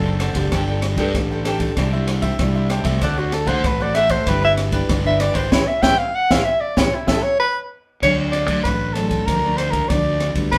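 Lively and joyful, this samba and choro excerpt moves in a straight four-beat feel, cut from a longer piece. A mellow soprano saxophone carries the melody up front in a jazz-style solo, its soft attack, light vibrato and scooped notes giving it a smooth top. Beneath it, a crisp picked cavaquinho and a fingerpicked classical nylon-string guitar supply acoustic accompaniment, with the cavaquinho dropping out at 7.2 seconds. A bright, growly fuzz bass, overdriven and punchy, anchors the low end, while an acoustic jazz kit enters at 0.2 seconds with dark cymbals, a high-tuned snare and a boomy kick sitting up front. The band hits a shared accent from 5.5 seconds as the saxophone solo closes, and the harmony shifts at 8.0 seconds into a new section that ends on a Bb/D, all heard as a band playing live together in one room with a wet studio reverb.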